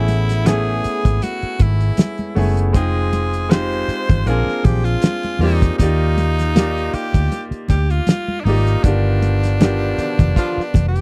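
A slow 79 BPM groove in 4/4 with a light swing on the sixteenths sets up this lush, 1970s-style soul excerpt, cinematic and bittersweet in mood. A cloth-damped drum kit sits up front with a fat snare, tight kick and hi-hat, its thuddy sound rolled off at the top, while congas with thick skins and hard hands play along in the background. A dark, round, foam-muted electric bass anchors the low end, and a clear, natural grand piano carries the harmony through Amaj7, Fm9, Bb9 and Ebmaj7 before landing on G7b13. Over this, a raspy tenor saxophone takes the melody with gritty, forceful, edgy vibrato in a pop style. The band hits an accent from 8.8 seconds, and a warm horn section with a smooth top, octave doubling and jazz-style vibrato punches in with brief stabs at 10.0 seconds. The sound is dry and close, like a 1970s studio session with little reverb.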